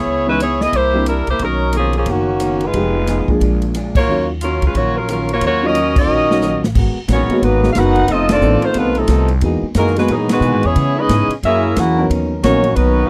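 A swung 4/4 groove from the polished drum kit, with punchy kick and an airy sound, drives this dramatic, brassy big band swing excerpt, while a woody, thumpy pizzicato upright bass on gut strings anchors the low end. The smooth-topped saxophone section carries the melody up front with vibrato, supported by a boxy upright piano and a dark, clean hollow-body electric guitar in the background. At 6.0 seconds a clear trombone section with soft attack enters with a second line, just before a drum fill at 6.1 seconds leads into a new section, and band accents punctuate the dry, close 1970s-style studio sound.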